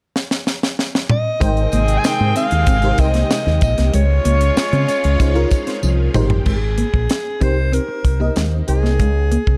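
Glossy and upbeat, this polished 1980s jazz-funk pop excerpt opens with a dry, tight drum fill before a jazz-style alto saxophone with vibrato takes the melody at 1.1 s. At 1.4 s it is joined by an up-front fingered electric bass through an envelope filter, a dreamy FM electric piano with chorus and tremolo, a dark, clean electric guitar riff, shimmering vintage string-machine violins, and a distant, roomy horn section with delay. A jingly tambourine follows in the background at 1.7 s, and a second drum fill arrives at 5.8 s.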